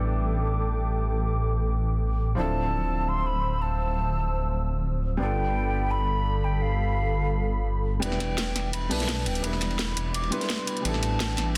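This rolling, dreamy liquid drum and bass excerpt at 170 BPM opens on a felt-muted upright piano with audible action noise, soaked in dub echo, over a chorused analog pad that carries a filter sweep and a deep, rumbling detuned saw bass sitting up front, moving through chords from A7sus4 to Dm9 and G9. At 2.4 seconds a hollow, airy jazz flute takes the melody with vibrato, a crisp chiff and digital delay. At 8.0 seconds the build-up begins as a gritty, saturated breakbeat kit with dark cymbals joins a layered electronic garage kit with a cracking snare, all set in light reverb and a dense, heavily limited master.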